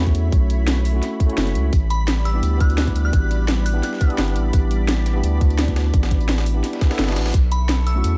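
A deep, saturated sub bass sits up front in this lush, melancholic liquid drum and bass excerpt at 171 BPM, joined by a tight electronic kick, a cracking layered snare and hats, and a gritty, compressed breakbeat kit tucked in the background. A bright, clean tine electric piano and a thick, detuned unison pad with chorus, phaser and sidechain pumping carry chords moving from B9sus4 to A9sus4, while a crystalline FM bell with chorus and digital delay plays a high melody from 1.9 to 4.1 seconds and returns at 7.5 seconds. A very quiet reverse cymbal appears at 7.1 seconds, and the dark production keeps reverb light throughout.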